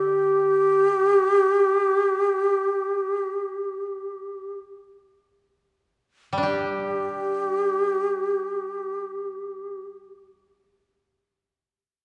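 This is a short, austere and calm passage of Japanese traditional chamber music in free time, drifting slower through its first 6.4 seconds. An end-blown bamboo shakuhachi carries the melody up front, breathy and bright with a soft attack and expressive vibrato, while a woody koto played with fingerpicks accompanies beneath it, spanning D3 to G4 at a lower level. The two are set in a reverberant concert hall space whose long tail lingers, and the passage is cut from a longer piece, with both instruments sounding until about 9.9 seconds.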